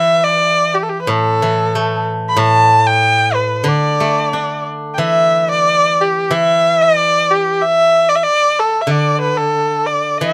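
Set in a free, rubato 2/4 at around 92 BPM, this graceful, festive fragment of Chinese chamber music in the D zhi mode features a single bowed erhu carrying the melody up front with rich vibrato and smooth, even portamento, while a bright, silvery steel-string zither plucked with fingerpicks rings up front alongside it in accompaniment, both captured by close, detailed microphones in light reverb across its roughly 10.3 seconds.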